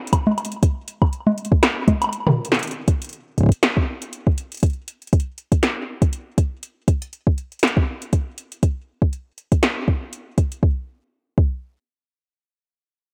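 This IDM piece is wistful and intricate, built entirely from drums with a gentle swing on the sixteenth notes. An analog drum machine sits up front, playing congas, hi-hat, snare, toms and woodblock, with a punchy snare and metallic hats that carry a small-room character and trail into analog delay. Beneath it, a soft electronic kick keeps a produced pulse, also placed close in the mix. At 2.1 seconds the kick drops out briefly while a drum fill leads into the longer middle section, and the drum machine stops at 10.6 seconds, leaving the kick alone until 11.5 seconds. Light reverb and heavy echo give the sound a hazy depth, as if the passage were lifted from a longer work.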